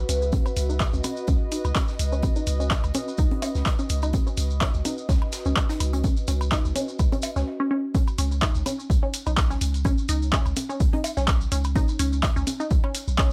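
A dry, close-sounding cut from a longer minimal techno track at 126 BPM, clinical and hypnotic, built on a punchy, tape-warm electronic kick drum and a deep, mellow sine sub bass, the bass sidechain pumping along with a squelchy, resonant blip pluck riff that carries phaser and dub echo. An analog drum machine adds handclaps and hi-hat, joined by grainy maracas, layered congas and cowbell with delay, and a very quiet big-room rock kit playing hi-hat and snare. A warbling, nostalgic lo-fi pad with chorus and phaser drifts under a filter sweep on a synth arpeggio sound until it drops out at 7.5 seconds, and the drop lands at 7.9 seconds.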